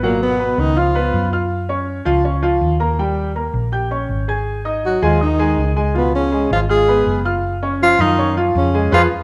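A large studio's moderate reverb, with a decay of 1.5 seconds, frames this driving, fiery jazz excerpt in straight 4/4 at 162 BPM. Up front, a dark, breathy tenor saxophone carries the melody with a whispered, intimate subtone, soft attacks, scooped notes and vibrato, while a trombone sits in the background on a second line, its warm tone also colored by vibrato and scoops. The two horns sound briefly at the opening, fall away at 1.3 seconds, and return at 4.9 seconds. Throughout, a natural-sounding grand piano supplies accompaniment up front, joined by a round, amped hollow-body short-scale electric bass, fingered and dark. The harmony moves from Abm7 through Db7 and Gbmaj7 toward a closing Gbsus2, and the band hits an accent together at 8.9 seconds.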